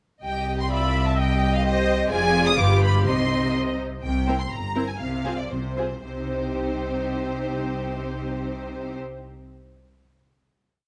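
A stormy, urgent classical-period movement for string orchestra in C minor opens at 0.2 seconds with violins carrying a warm, lush melody up front while a more distant second violin section shimmers in tremolo with after-beat and sustained chords, cellos mark the bass on the beats and double basses double that line, and the clear, intense violas join at 0.7 seconds with a counter-melody. Moving quickly in 2/4 at around 110-130 BPM, the short piece shifts into a coda at 4.0 seconds, slowing down from 3.6 to 6.0 seconds before settling on a final C minor chord at 6.0 seconds. The close, detailed sound carries light reverb.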